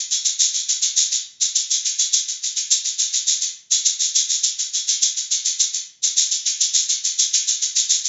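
A straight 4/4 pulse at 104 BPM drives this short pop passage, cut from a longer piece, carried entirely by a tube shaker that enters at 0.1 s and runs through to 8.1 s. The shaker sits up front, its grainy, bright acoustic texture carrying a vintage character that suits the heartfelt, carefree mood. The sound was captured on a phone in the room, so club ambience hangs around the shaker and compression keeps it level and dense. The top end stops at 7.7 kHz, giving the highs a boxy, narrowed edge. A moderate studio reverb of 0.6 s adds a short tail that makes the space feel lively.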